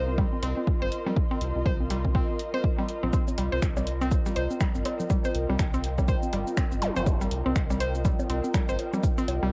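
An overdriven, dry electronic kick drum sits up front in this cool, clinical minimal techno excerpt with a swung 16th-note feel, anchored by a deep, round analog bass and a woody, bright mallet-like synth pluck riff coloured by chorus, analog delay and sidechain pumping. An ethereal, airy pad with ensemble chorus and its own reverb hovers above on a single Cm7 chord, while congas and bongos with tape echo sit in the background and a punchy analog drum machine adds finger snaps, hi-hat and shaker. A brief electronic zap flashes by at 6.8 seconds, and the whole cut carries the light reverb of a home cassette recording.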